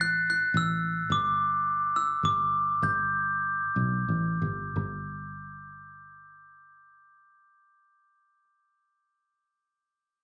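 Hopeful and nostalgic, this short fragment of indie folk in 3/4 has a building arrangement, opening with an up-front, bell-like glockenspiel struck with brass mallets carrying a high, ringing melody over a round, foam-muted fingered electric bass. The pace slows from 1.1 to 4.8 seconds as the chords move through G5 and Gadd9. The glockenspiel drops out at 4.0 seconds, leaving the dark, direct bass alone until 8.4 seconds, all captured on a phone in a room with a club-like reverb.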